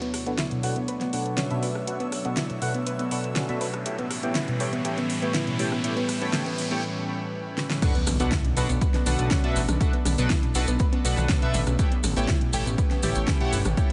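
Dreamy and bittersweet, this progressive house excerpt at 121 BPM in B minor builds over an airy, breathy pad, a soft round pluck, glossy chorused polysynth stabs with a filter sweep, a reversed swelling texture, a background riser and an overdriven deep house kit with metallic hats, then drops at 7.8 seconds as a punchy, up-front kick and maracas arrive, joined at 8.1 seconds by a fat, detuned analog bass and tape-warm electronic toms and congas, with most parts pumping under sidechain over a Bm7 to A7 progression.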